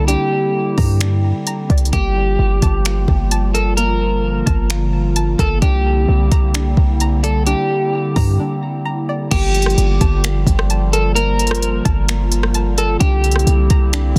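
A slightly broken-up, dark electric guitar melody with delay opens this spacious, hazy atmospheric cloud-rap excerpt at 130 BPM in a half-time feel in G dorian, over a warbling, nostalgic, lo-fi pad of detuned, sidechain-pumped chords, a twangy, string-like resonator pluck arpeggiating in the background, and a deep, boomy 808-style bass; a smooth, up-front R&B kit of soft kick, hats, snaps, rim clicks and crash joins at 0.1 seconds, and a brief break at 8.4 seconds leads into a new section at 9.3 seconds as the chords move between C9 and Gm9 in a dense, heavily limited mix.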